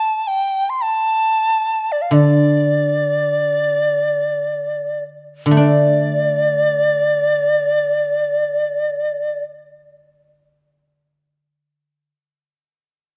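A large dizi opens this tender, wistful Chinese traditional chamber piece in free time, its pure bamboo tone edged with a buzzing membrane, crisp attack and vibrato as the pace slows over the first 5.6 seconds, while a ringing, silvery guzheng played with fingerpicks enters in a lower register at 2.1 seconds and carries on after the dizi stops at 9.4 seconds, both placed up front in a dark production with light reverb, cut from a longer piece.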